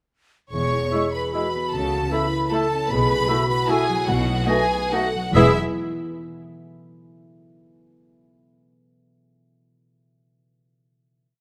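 A lush, bowed violin section carries the melody of this short, sweeping orchestral ballroom waltz in three, its smooth vibrato tone placed close and shaped with a rubato feel. A chamber violin section doubles the tune at the octave, while an airy, hollow flute shadows it in unison and in sixths from the background. A punchy French horn section adds a counter-melody over sustained chords, and a concert harp rings out broken chords plucked with the thumb. Below, cellos with a soft attack sound the bass on the beats, doubled by a focused double bass section, as a distant viola section, oboe, clarinet and bassoon fill in after-beat chords, all four entering at 0.9 seconds. The elegant phrase settles onto a final chord at 5.4 seconds, heard in a detailed, lightly reverberant space.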